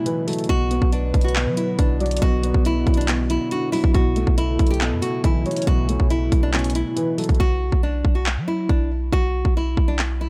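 An overdriven trap drum kit sits up front, its hard-clipped kick, bright hats and handclaps roughened by vintage 12-bit sampler grit in this hard-hitting, menacing half-time cut from a longer piece. A deep, boomy 808-style bass with a noise layer and fast, decaying attack enters at 0.5 seconds. Above it, a fingerpicked nylon-string guitar carries the melody with fresh strings, audible finger squeak and a delay. A felt-muted upright piano adds boxy, intimate accompaniment with audible action noise, while a very quiet, warbling tape-like pad holds detuned, nostalgic chords. A round, dark octave-layered synth lead with chorus, tremolo and delay plays a second line. At 7.4 seconds the piano, pad and synth lead stop and the hi-hats drop out, leaving guitar, bass, kick and claps over a digital ambience.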